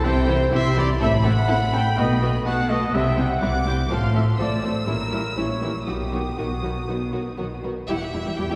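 A brisk, straight 4/4 pulse at 124 BPM drives this dramatic, urgent classical-period movement for symphony orchestra, a short passage cut from a longer piece. Bowed violins carry the melody high between E5 and E6, their tone focused and lush with vibrato, while a second violin line sits underneath in the background, smooth and even. Violas fill out the accompaniment, and cellos and double basses anchor the bass, the basses sounding close and the cellos set further back. A dark, tight trumpet section cuts through with classical-style stabs until 7.4 s, after which the strings continue, the basses to 8.4 s and the others to 8.6 s. The harmony moves from C through Am and B7 back to C, then through F/A and A#dim7 to B before settling on Em at 7.9 s, all heard from deeper in a reverberant concert hall.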